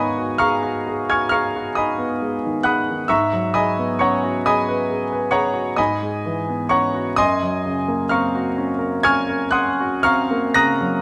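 A clear concert grand piano, intimate and up front with audible action noise, deep bass and long sustain, plays a hazy, mysterious passage of impressionist solo classical music in a rubato 9/8, drifting from Abm7 through Gb9sus4/Ab to Gbmaj7#11 within a moderate recital hall reverb.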